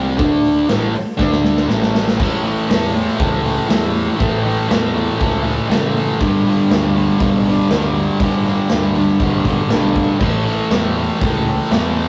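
Swaggering and raw, this garage rock passage is cut from a longer piece and rides a straight 4/4 groove. A double-tracked fuzz guitar sits up front with a distorted, picked riff, while a dark, round picked bass thick with overdrive and fuzz holds down the low end. A gritty, saturated acoustic kit joins at 0.2 seconds with a punchy kick, medium-tuned snare, hi-hat and crash, its pumping stone-room sound roughened by vintage sampler grit. The drums play a fill from 1.2 to 2.2 seconds as the opening trades D5 and A5 power chords, after which the riff settles on A, moves to G and comes back to A. Wet studio reverb, tube saturation and cassette tape give the recording the feel of a rough rehearsal-room take.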